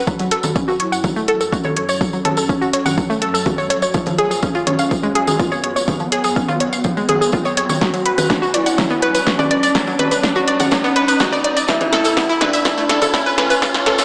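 A dreamy, reverb-soaked mix with a thin, small-speaker character and trimmed lows opens this dark, melancholic stretch of melodic techno, cut from a longer piece. A bright, up-front analog pluck spins arpeggios with chorus, sidechain pumping and diffuse ambient delay, while a smooth, expressive synth lead carries the melody with vibrato, subtle chorus, 12-bit sampler grit and its own trailing delay. Beneath them a very quiet, swarming drone of detuned, granular tones adds tension, and a background swell and riser builds throughout as filter sweeps open on both the pluck and the lead. A punchy, overdriven electronic kick and a layered deep house kit with congas, a punchy snare and metallic hats drive the groove, the hats and percussion pumping with sidechain compression, with a jingly, close and dry tambourine on top. The chords move from F#m through C# and Bm to Asus2, and a drum fill from 7.8 seconds carries the build onward.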